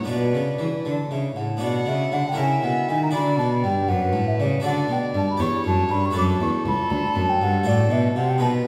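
A baroque-style classical sonata movement in B minor, this short excerpt cut from a longer piece moves at a grave, solemn 80 beats per minute in a straight 6/8, tuned to A4 = 436 Hz. A mellow wooden baroque flute carries the melody high above, airy and expressive with vibrato, a soft attack and lifted highs, while a gut-strung violin in period style adds a reedy second line beneath it. The continuo rests on a rich, up-front cello with light vibrato and a close, dry harpsichord whose brilliant, full Italian-style plucked tone rings with octave strings. The harmony leans on B minor and D major, passing through diminished chords such as A#dim and F#dim/A that deepen the sombre mood. All four players sound together from the opening moments, placed in a reverberant recital hall heard from further back in the room.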